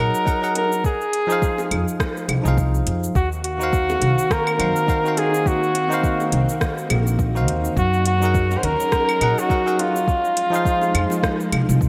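A relaxed 104 BPM groove with a 16th-note swing sets this wistful sunset chillout excerpt in Eb dorian, driven by an overdriven electronic kick, a produced R&B kit of metallic hats, claves, rim click and shaker under gated reverb, very quiet distant bongos, and a woody, thumpy pizzicato upright bass up front with tube saturation. Over it, a vibrato-laden jazz flugelhorn carries the solo melody through delay while a bell-like, clean tine electric piano comps on chords moving from Gb69 through Fm7 to Ebm69. A silky, warbling string machine with ensemble chorus enters at 3.6 seconds in the background, all set in a lush hall with bright 1980s-style digital production.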